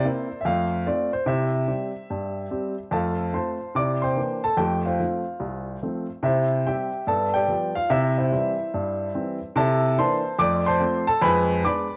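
Swinging eighths at 145 BPM drive this exuberant stride jazz fragment in F major, played by a lone upright piano spanning C2 to D6, its woody, intimate and polished tone sitting up front with long sustain and audible action noise, colored by cassette tape and a wet spring reverb in a homespun recording, as the harmony moves through C9, G7 and C13 before landing on Fdim7 at 11.2 seconds.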